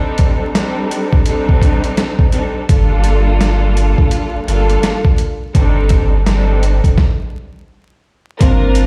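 Swung, head-nodding boom-bap drums with a thumpy kick, medium-tuned snare and hi-hat come in at 0.2 seconds, sounding compressed, pitched down and tape-warm, setting a tough, gritty hip hop mood in this excerpt. Lush bowed strings with vibrato and portamento carry the chords from the start, joined at 2.7 seconds by a deep, round sine sub bass that sits up front with the drums. After a stop from 7.0 seconds, a dark, ringing vibraphone played with soft mallets enters at 8.4 seconds, all under vinyl crackle and a stone-room reverb as if played on a big sound system in a bare room.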